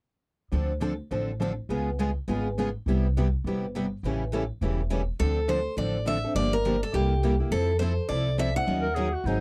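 Swung eighth notes drive this fiery, bittersweet fragment of acoustic string swing in four. From 0.5 s, two picked steel-string acoustic guitars play the accompaniment over an up-front upright bass, plucked on gut strings with a woody, thumpy tone. At 5.2 s a third picked guitar takes up the melody as the harmony turns toward the minor. Among the guitars, one is bright and up front with audible finger squeak, another is warm in an auditorium-like space, and a third is boxy with fresh strings in a parlour-sized room. A bright clarinet enters at 8.8 s with a forceful, punchy second line, vibrato and a distant, roomy character. Light reverb sits on a dry, close 1970s-style studio sound, and the piece is cut from a longer performance.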